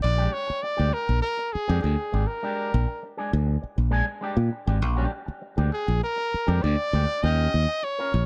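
A forceful, jazz-style trumpet leads this strutting, energetic funk clip in Bb mixolydian at 100 BPM, its punchy solo line carrying a light vibrato over a Bb6 chord that shifts to Eb9 at 7.2 s. Beneath it, a growly, up-front fingered electric bass drives the groove, while a clean, twangy picked electric guitar comps through an envelope filter and a touch of spring reverb. The sound is dry and close, with a 1970s studio feel, and the passage is cut from a longer piece.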